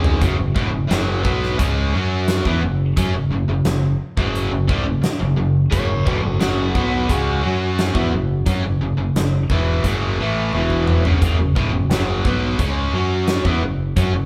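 A drum fill opens this sunny, confident classic rock excerpt, landing at once on a distorted electric guitar riff built around an F#5 power chord at 87 BPM in straight 4/4. That main guitar sits up front, bright, picked and double-tracked, with a compressed, scooped tone. A growling fingered electric bass runs beneath it, its bright, direct-and-amped sound thickened by overdrive. The huge arena drum kit plays a punchy kick, a fat snare, hi-hat and toms, and another fill arrives at 10.5 seconds. Between 5.7 and 8.4 seconds, a quieter overdriven electric guitar adds a brief second line in a higher register, its picked tone warm and compressed. The whole band plays live together in a stone room with a moderate reverb.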